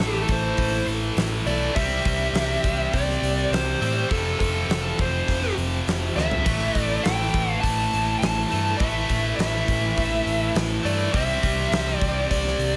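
A straight 4/4 groove at 102 BPM drives this heavy, menacing hard rock excerpt in A minor: a huge arena drum kit sits up front with a punchy kick, fat snare and bright cymbals, and plays a fill at 6.2 s, while a growly overdriven picked bass and two riffing guitars, one overdriven and one high-gain and distorted, churn through Am, C, F and A5, a dark, smooth overdriven lead guitar carries the melody through plate reverb, and a very quiet, clean tonewheel organ holds sustained chords through a rotary speaker.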